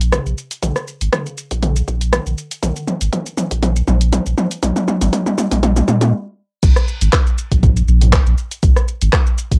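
Driving and spiritual, this afro house excerpt, cut from a longer piece, rides a gently swung sixteenth-note groove in four. A round, sine-like sub bass with a fast attack and sustained notes sits up front, pumping with the sidechain. A deep, overdriven electronic kick joins almost at once. Beside it, a layered deep house kit of crash cymbal, handclaps, hi-hat, rim click, shaker and toms carries a gritty, tape-saturated edge, as if re-recorded in a small room. The opening is a build-up with a drum fill running until a brief stop at 6.1 seconds, and the drop lands at 6.6 seconds to launch the next section. The overall sound has a homespun cassette character with a light reverb.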